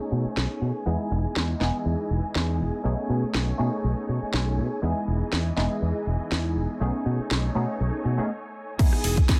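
Sunny and funky, this filtered disco house excerpt moves at 121 BPM in E major with a light swing, built on a chorused, phased sawtooth polysynth comp and lush, clear bowed strings with vibrato, both pumping under sidechain and a low-pass filter, as chords shift between B13 and Emaj7. A growly, up-front fingered electric bass enters at 0.1 seconds and an overdriven house kit with a cracking snare and bright hats joins at 0.4 seconds, all riding a filter sweep that runs until 8.8 seconds. After a short break, a punchy, layered electronic kick lands at 8.8 seconds.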